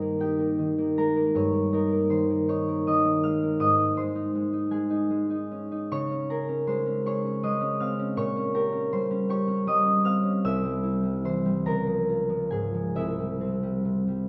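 Mysterious and wistful, this classical excerpt from a longer piece features a solo concert harp, mellow and thumb-plucked, ringing up front across a broad range in a rubato 6/8 lilt, bathed in the lush reverb of a recital hall as its harmonies move through Ab major toward a close on C at 13.0 seconds.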